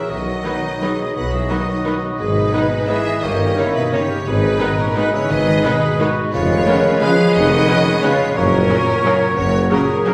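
A focused, vibrato-rich violin section carries the sweeping melody of this elegant orchestral ballroom waltz in 3/4, swaying with uneven beats and rubato, while a mellow clarinet, a pure small flute group, a soft-attack oboe and a vintage-toned bassoon sit in the background, a concert harp ripples ringing fingerpicked arpeggios, an expressive cello section, a clear double bass section and a very quiet tuba hold the bass, a very quiet second violin section and a rich viola section fill out the harmony, a dark, distant French horn section sustains chords and a trumpet adds background stabs, all heard from further back in a wet scoring-stage reverb.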